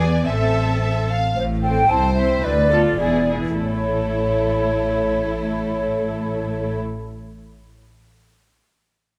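In a rubato 2/4 that slows between 0.8 and 3.6 seconds, this stormy, dramatic fragment of a quick classical-period orchestral movement sets a distant, lush violin melody in the background against a close, rich second violin line, smooth and even violas, focused cellos and up-front double basses with a soft attack, while an airy, hollow flute section enters at 1.4 seconds in straight tone, the bowed strings all singing with vibrato in a concert hall reverb as the harmony moves through Am, Am/C, Bm7b5/D and E7 to A.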